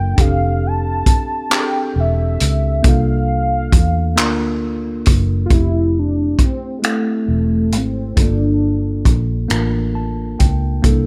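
In a slow, straight 6/8 at 45 dotted-quarter beats per minute, this tender R&B excerpt in F major rests on a soul drum kit of finger snaps, handclaps, hi-hat and a punchy kick, recorded in a small room with a rolled-off top and sitting up front in the mix. A foam-muted, fingered electric bass, dark and round, anchors the low end and also sits up front, while a worn tine electric piano, mellow and slightly out of tune, supplies the chords, moving from F69 to C13sus4 and then, as the second section begins at 5.5 seconds, from Fmaj9 to Gm9. Over them a velvety synth lead carries the melody, its detuned sawtooth and triangle tones warbling with chorus and vibrato, smooth and sustained after a fast attack. The lead falls silent at 9.2 seconds, and the electric piano adds a short fill from 9.5 to 10.8 seconds before the clip ends. The whole piece sits in a studio ambience, intimate and unhurried.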